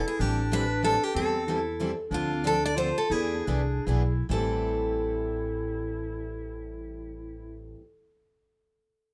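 A swung 3/4 pulse moving between 131 and 188 BPM, easing back between 2.1 and 4.3 seconds, drives this fiery yet bittersweet jazz manouche fragment in A minor, cycling through Am7, Dm7 and E7. Up front, a bright picked steel-string guitar carries the melody with audible finger squeak, while a breathy, vibrato-laden clarinet with a vintage subtone sings a low second line. Beneath them, a full-bodied dreadnought guitar and a boxy parlour guitar tucked in the background pick out the accompaniment over a woody, thumpy pizzicato upright bass on gut strings, all set in light reverb.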